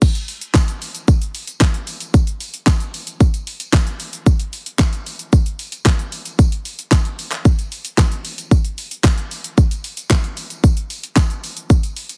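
Confident and driving, this short pop excerpt runs at 113 BPM in a straight 4/4. A punchy, electronic drum kit sits up front for the full 12.2 seconds, layering kick, fat snare, hi-hat, crash cymbal, handclaps and shaker into a produced beat that sounds re-recorded in a small room. Its hats carry a warm tone against the weight of the kick. Far back in the mix, a jingly acoustic tambourine rings brightly with a live-room character throughout. The whole passage plays as a drop, dry with little reverb and squeezed into a heavily compressed, filtered radio sound that thins out the low end.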